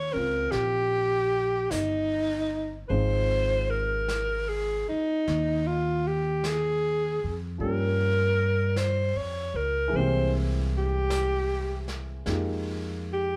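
Smoky and wistful, this short slice of a jazz ballad moves at an unhurried swing, like a small band caught playing live together in one room under a light touch of reverb. A breathy alto saxophone carries the melody up front, its subtone and vibrato giving the line a hushed, intimate voice. Beneath it, an upright piano with a warm, woody tone supplies the accompaniment, while a pizzicato upright bass sits close and thumpy at the bottom of the band. A brushed drum kit joins at 0.5 seconds, keeping its snare and hi-hat soft and well in the background. The harmony drifts through lush extended chords, from Eb13 at the opening to a closing Fm11 at 12.3 seconds, before the fragment breaks off at 13.4 seconds.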